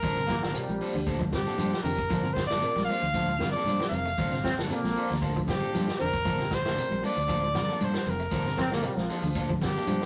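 A clear, up-front trumpet with vibrato and scooped notes carries the melody of this intense, defiant afrobeat excerpt over a single Gm9 chord, with a bright trombone section adding a second line in short bursts at 0.3, 4.5 and 8.6 seconds, two twangy, slightly broken-up electric guitars, one picking arpeggios in the background and the other picking stabs, a round fingered electric bass, a vintage drum kit with a tight kick and rolled-off top, very quiet damped congas, a grainy shekere, and a bell-like electric piano with phaser, all captured as a rough rehearsal-room recording with saturation.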